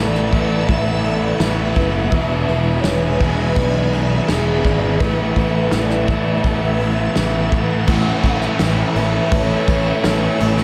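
Blissful and hazy, this short cut from a longer shoegaze and dream pop piece drifts over Asus2 and E7 chords, with a velvety, detuned synth lead singing a chorused, delayed melody in the background while a swirling, phased string machine holds sustained chords above. Beneath them sit a lo-fi, slightly broken-up guitar picking arpeggios, a pair of overdriven guitar riffs, one crunchy and treated with reverse reverb and the other lightly chorused, and an up-front, punchy fuzz bass, all carried by a distant, roomy brush kit with dark cymbals. At 7.9 seconds the harmony moves to Aadd9 and a very quiet, double-tracked overdriven guitar joins with a new riff, the whole mix soaked in lush hall reverb.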